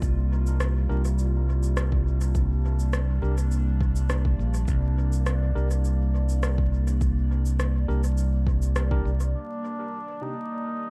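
At 103 BPM in a straight 4/4, an electronic kick drum with a deep, layered sound anchors this ambient dub passage until about 9.0 seconds. It is joined by an electronic cabasa and rim click that are overdriven and thrown into dub echo, playing until about 9.3 seconds. Underneath, an overdriven fingered electric bass sits up front, amped and punchy, holding low between Bb1 and C2. A warbly, tape-like pad sustains chords over the whole cut, its detuned, lo-fi tone treated with chorus, phaser and its own reverb for a nostalgic, spacious haze. From 0.9 seconds a mellow tine electric piano adds clean stabs in the background, each one trailing off in dub echo. At 9.3 seconds the harmony moves from G minor to C minor ninth as a cup-muted trumpet enters with a soft, veiled classical-style line between D4 and Eb4, distant yet up front and also echoed. The mix is dry of reverb overall but heavy with echo and dusted with vinyl crackle, leaving a deep, spacious mood in this short section cut from a longer piece.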